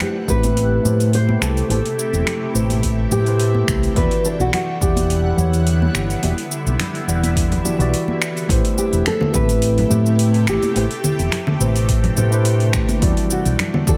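Sunset chillout in A minor at 106 BPM with a light 16th-note swing, smooth and warm, where a full-bodied, thumb-plucked nylon-string guitar carries the melody with delay over a mellow, clean tine electric piano and a shimmering, ethereal ambient pad with chorus and phaser, while a round, amped fingered electric bass and a punchy, overdriven electronic kick enter at 0.3 seconds to join a layered deep house kit of cabasa, finger snaps and metallic hats, with bright, high-tuned congas in the background, all moving between Am9 and Em9 in light digital ambience in this excerpt cut from a longer piece.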